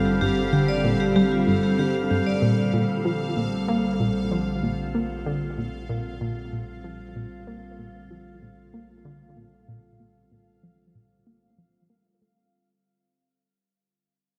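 Hypnotic and expansive, this short stretch of ambient, sequencer-driven space music moves at a steady, straight pulse in four, fading out across its full length. An evolving wavetable pad sits up front with bright, morphing sustained chords, slow-blooming and long-releasing under chorus and built-in reverb, while a round analog pluck with a detuned sawtooth edge and fast, decaying attack repeats a riff through chorus and analog delay, carrying a filter sweep. Beneath them, a deep, wave-folded analog bass adds quiet low weight with tube saturation, and a bubbling stepped-filter texture hovers high on a single resonant note. A metallic, ringing vibraphone struck with hard mallets flashes close-miked arpeggios through analog delay, stopping at 2.4 s as the harmony moves from G7(no3) to Bbsus2. The whole sits in a concert hall reverb with a dark, warm production.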